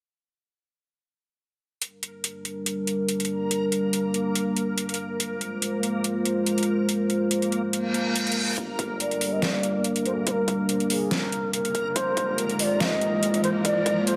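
Brooding and cavernous, this deep dubstep excerpt in half-time opens at 1.8 seconds with a moody, detuned analog pad up front and a dubstep kit of deep snare and metallic, overdriven hats, soon joined by a reversed, granular swelling texture, before a reverse cymbal leads into a build-up at 8.6 seconds, where a punchy overdriven kick, a rumbling detuned saw bass in the background and a riser enter, and an airy, end-blown shakuhachi with rolled-off highs, dub echo and a filter sweep arrives at 9.0 seconds over a shifting Gm and Fm harmony.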